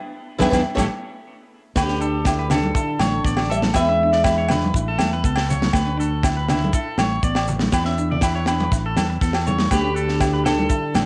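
This joyful, sunny highlife guitar band fragment has a cassette home-recording character: a boxy, picked acoustic guitar carries the swing-style melody with audible finger squeak, while a bright, clean electric guitar comps in the background and a twangy, slightly broken-up electric guitar spins arpeggios through tape echo. A round fingered bass and a dry funk kit with a high-tuned snare and tight kick anchor the groove, joined by ringing agogo bells, damped thin-skinned congas and grainy maracas set further back. From 1.8 seconds a dark, breathy bucket-muted trombone adds a veiled second line with scooped notes and tape echo.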